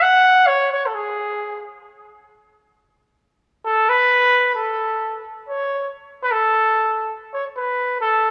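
Proud and romantic, this brief snippet of Mexican folk music unfolds in free time, with a mellow, vintage-toned trumpet singing a classical-style solo between G#4 and F#5, tuned to A4 = 441 Hz. The trumpet sits up front with a tape echo, sounds for its first 1.6 seconds, pauses, then returns at 3.7 s and carries through to the end as the phrase moves into a new section. A live, single-room feel and a wet studio reverb surround it, and lossy compression artefacts are audible.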